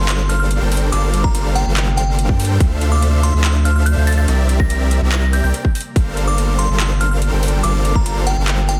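A half-time groove in 4/4 drives this bittersweet, emotional slice of future bass, cut from a longer piece, with a trap drum kit of handclaps and metallic, overdriven hi-hats entering at 0.1 seconds and a hard-clipped, up-front electronic kick arriving at 1.2 seconds. Underneath, a deep, thick sine sub bass carries a saturated, sustained low end that pumps against the sidechain. Huge, lush supersaw chords built from detuned sawtooth and square waves with a sub octave play a bright riff, pumping the same way, while an ethereal, very quiet pad with a slow attack and long release fills in sustained chords behind them. On top, a glassy, crystalline FM synth bell sings the melody with decaying notes, shimmering through chorus, digital delay and its own sidechain pumping. A faint downlifter sweeps through the opening seconds over a harmony that moves from Gm11 to Dm9 and C7 before settling back on Gm11, all inside a dense, heavily limited modern master with a digital ambience.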